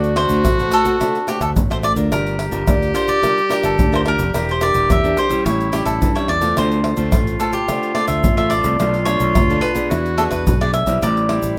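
Playful and lively, this samba and choro excerpt at 108 BPM in 4/4 sets a crisp, up-front cavaquinho melody over a bright, close-miked clarinet second line, a small-sounding fingerpicked nylon-string guitar with fresh strings, a growly overdriven fingered electric bass, and close, dry percussion of egg shaker, pandeiro, tamborim and deep surdo played with soft hands, all moving through chords from D7 and Gm7 to a closing Am7 at 11.0 seconds in a moderate studio reverb.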